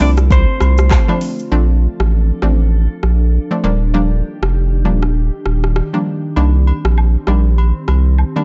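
A saturated sub bass sits up front in this breezy, joyful afrobeats excerpt, thick and triangle-toned with a fast attack and sustained notes. Alongside it, an electronic afro-pop drum kit with a deep kick, metallic hi-hats, handclaps, rim clicks and shaker carries a swung sixteenth-note feel in four. A clean, twangy electric guitar, recorded direct and compressed, plays a brief picked melody with digital delay that stops at 1.2 seconds. Meanwhile a round analog pluck with a noise layer and chorus provides accompaniment, and a glassy FM pad holds ethereal, mellow chords with ensemble chorus and its own reverb. Agogo bells and woodblock add close, dry acoustic color at the opening and return at 6.4 seconds, as the chords move from Dm7 to Bbmaj7, Ebmaj7 and Cm7. The overall production is dark, with little reverb.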